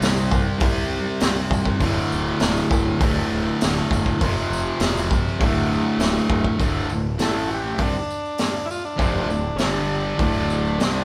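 A bright, double-tracked fuzz guitar riff opens this gritty, swaggering garage rock fragment in D minor at 100 BPM, backed by a fuzzy fingered bass, a punchy, saturated small-room drum kit with a high-tuned snare, and a jingly, band-limited tambourine tucked in the background. At 7.2 seconds a vintage, buzzy combo organ enters with a solo melody, overdriven and treated with spring reverb, riding up front over the band. The sound is that of a band playing live in one room with light reverb, the guitar, drums and organ all pushed forward.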